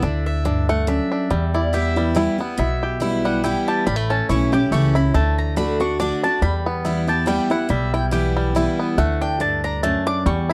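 Bluegrass in a lonesome, haunting mood at 141 BPM in a swung 3/4 and E dorian, this fragment of a longer piece puts a bright, double-strung mandolin solo of high stabs over the whole 10.5 seconds, while a twangy, fingerpicked banjo carries the melody, a full-bodied, fresh-stringed dreadnought guitar with audible finger squeak picks the accompaniment through D, Em and A, and a thumpy, woody pizzicato upright bass anchors the bottom, all captured in a dry, close 1970s-style studio sound.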